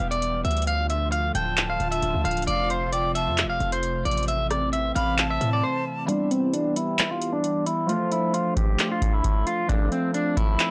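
A booming analog drum machine with a deep kick, metallic hats, handclaps and rim clicks drives this dark, hard-hitting half-time trap excerpt at 133 BPM in E phrygian, joined up front by a punchy, saturated 808-style bass that drops out at 5.6 s for a brief break. A twangy, slightly broken-up electric guitar carries the low-passed melody over a smooth, warbling analog pad with lush chorus, while a breathy, bright jazz flute with vibrato and tape echo adds a second line from 1.3 s. At 6.1 s a fingerpicked, ringing Celtic harp enters as accompaniment as a filter sweep runs to the end, all framed by digital ambience and a dry, gritty cassette-tape sound.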